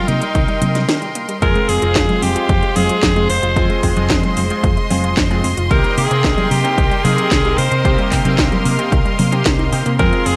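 A raspy, gritty alto saxophone carries the melody through tape echo and shimmer reverb in this nostalgic, bittersweet Italo disco cut in F minor at 112 BPM, over bright bowed chamber strings holding sustained chords, a warbling detuned unison pluck arpeggiating in the background, a round, dark hollow-body electric bass, an up-front overdriven house kit with congas, handclaps, metallic hats and a cracking snare, and a punchy overdriven electronic kick, with a glossy chorused polysynth adding stabs from 1.4 s after a brief break at 0.9 s.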